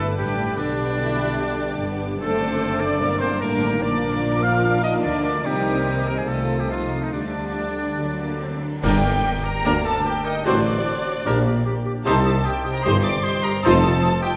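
Classical orchestral music, a dramatic and restless fast romantic movement in G minor at 149 BPM in 4/4, moving with a flexible rubato feel and cut from a longer piece. A lush violin section carries the melody with smooth vibrato, while a second violin line, a bright and present oboe, a pure, close-miked flute and a very quiet, mellow clarinet weave secondary lines around it. Violas supply background accompaniment, and cellos and woody double basses anchor the bass as a dark, distant French horn section and a tight trombone section hold sustained chords, the trombones dropping out at 8.6 s. A very quiet, ringing harp spins arpeggios throughout, soft round timpani strokes on G land twice, and dark cymbals with concert bass drum add a swell in the middle. At 8.8 s a band accent opens a new section where a mellow trumpet adds stabs and a roomy tuba joins the bass, over a chord sequence that begins in G major before turning firmly to G minor. 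The whole orchestra sits in the wet bloom of a concert hall.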